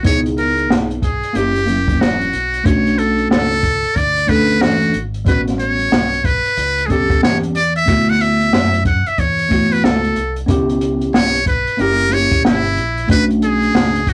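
Jazz-hop with a smooth, relaxed mood, this 14.1-second excerpt from a longer piece moves at 92 BPM in 4/4 with a swung sixteenth-note feel, drifting through jazzy changes such as C#m7, F#7b9, Bm9, A13 and D69. A buzzy, thin trumpet with a metal mute carries the melody up front with light vibrato and a soft attack, over a worn, slightly out-of-tune tine electric piano, a round, dark fingered dub bass sitting lower in the mix, and an acoustic jazz kit with a boomy kick, medium-tuned snare and hi-hat. The whole take has the rough feel of a rehearsal room, with a short, wet booth ambience and warm saturation.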